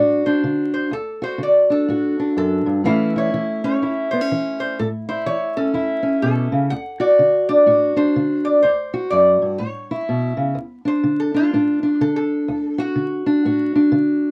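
A metallic, nasal lap resonator guitar played with a steel bar and fingerpicks carries the melody up front over a dark, boxy fingerpicked parlour steel-string guitar in this rollicking, laid-back acoustic country blues cut from a longer piece, swinging at 124 BPM in D major with light reverb, close dry 1970s-style studio sound and vinyl crackle, the resonator stepping out for a slide solo from 10.6 seconds.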